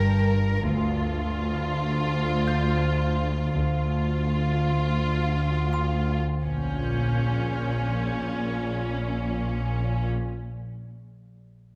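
An uneasy, tense cinematic passage at 83 BPM opens with a lush, focused violin section carrying the melody over a rich, close cello section and an eerie, metallic drone with a nasal FM character, slow attack, chorus and its own reverb. A clear, intense double bass section joins at 0.7 seconds as the harmony moves from G minor to D minor, and a delicate, tinkling, slightly out-of-tune music box adds a very quiet, boxy glimmer from 2.5 seconds. At 6.5 seconds the chord darkens to B-flat minor while a distant, smooth high violin section returns in the background, the whole fragment sitting in a moderate scoring-stage reverb.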